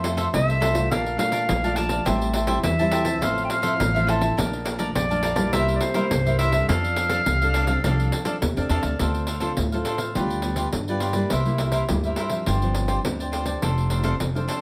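Lively and yearning, this samba-choro excerpt sets a clear, distant clarinet with vibrato and scooped notes soloing from 0.3 s to 8.4 s over crisp picked cavaquinho, fingerpicked classical nylon-string guitar, a woody, growly pizzicato upright bass up front and a jingly, saturated pandeiro, before the harmony turns toward D minor at 9.0 s in a moderate studio reverb.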